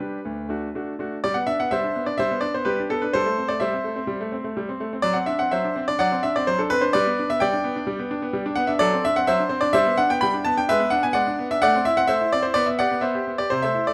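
Playful and elegant, this classical-period piano sonatina excerpt moves at 127 BPM in a straight 4/4 in G major. A bright grand piano plays alone from 0.0 to 13.9 seconds across a range from D2 to B5, sounding brilliant and natural, up front in the mix. After a brief opening on D, the harmony settles on G at 1.2 seconds and passes through Am7/G, D7/F#, G#m7b5 and Am before landing on G/B, all captured by close, detailed microphones within a moderate recital hall reverb.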